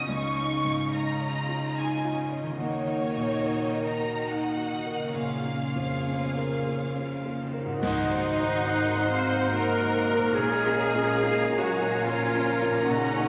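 A sorrowful, bittersweet cinematic film score in 3/4 at 71 BPM, this passage from a longer piece moves with a rubato feel as a rich, vibrato-laden violin section sings the melody over a lush second violin line, a hushed, felt-muted upright piano with audible action noise, a smooth viola section, ringing fingerpicked harp arpeggios and a very quiet, intense cello section on the bass. Dark cymbal swells, clash cymbals and concert bass drum sit in the background from 5.2 to 9.5 seconds. At 7.8 seconds a band accent brings in a hollow flute, a clarinet and a distant, roomy oboe on second lines, mellow French horns holding chords and a focused double bass section, all bathed in a spacious scoring-stage reverb.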